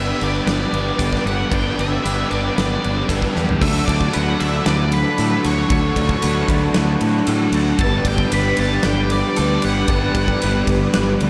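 A dreamy, reverb-soaked mix sets a wistful, hazy shoegaze and dream pop excerpt in D major at 115 BPM, where a dark octave-fuzz lead guitar carries the melody through diffuse ambient delay over a brassy, detuned analog pad with chorus and a twangy, direct-recorded clean guitar picking quiet arpeggios. Overdriven riff guitars, one with reverse reverb and a lo-fi garage one with ensemble chorus, sit in the background alongside a very quiet, double-tracked distorted guitar that drops out at 3.6 s, while a growling, overdriven fingered bass stays up front. A huge, punchy arena drum kit with bright cymbals drives the groove, marks the move from G to D with a fill at 3.4 s, and is joined by a jingly background tambourine.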